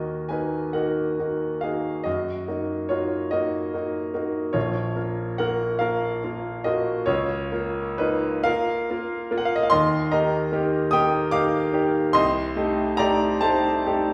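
This romantic classical nocturne for solo piano, cut from a longer piece, carries a wistful, melancholic mood. It moves slowly in 6/8 at around 42-50 BPM, counted in dotted quarters, with a free, rubato feel. The concert grand sounds clear, intimate and polished, with deep bass and audible action noise, and it spans from Bb1 up to Eb6. The harmony drifts from Ebm through Bbm, turns to Eb major at 9.7 seconds, and reaches Am7b5/C at 12.2 seconds. A wet stone room's reverb, with an RT60 of 1.4 seconds, places the listener further back in the room, while the piano itself stays present and up front.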